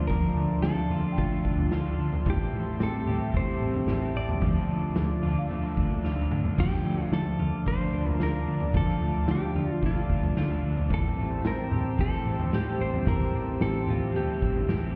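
A straight 4/4 pulse at 111 BPM carries this haunting, ethereal dream pop excerpt in D minor, its punchy-kicked vintage drum kit pumping in a small room with dark cymbals and a fill at 6.0 seconds, while a round, foam-muted picked bass anchors the Dm and Am7 changes. A clean, compressed guitar plays arpeggios through subtle chorus and tape echo beneath a bright, twangy lead guitar melody, also tape-echoed, as a crunchy, double-tracked overdriven guitar shimmers with tremolo and analog chorus in the background and a thick, detuned sawtooth pad holds slow-attack chords. A delicate, bell-like celesta adds very quiet texture until 6.5 seconds, and the whole mix sounds muffled as if heard through a wall, bathed in lush hall and club reverb.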